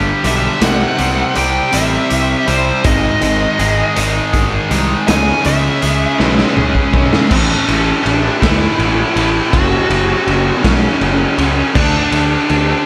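Bittersweet and restless, this quiet-loud alternative rock fragment in 6/8 opens in half time with a dark, overdriven lead guitar solo over clean, twangy arpeggios with slapback echo and a compressed fuzz guitar riff, both of which stop at 7.3 seconds after a drum fill, while a tight distorted guitar riff, a growly up-front fuzz bass and a punchy raw garage drum kit with a rolled-off top carry on beneath the lead melody into a new section, the whole mix set in a lush hall reverb for a big arena sound.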